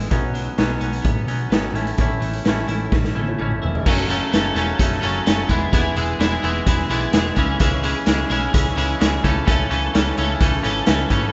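Two overdriven electric guitars drive this upbeat, carefree indie rock excerpt at 128 BPM, one bright and compressed and the other biting with ensemble chorus and analog delay, over a round, dark hollow-body bass and a gritty garage drum kit with a punchy kick, up front in a stone room, where a drum fill from 2.9 to 3.9 s carries the chords from Bsus2 and A into F#m, E, C#m and Amaj7/C#, set in a rough home demo mix with light reverb.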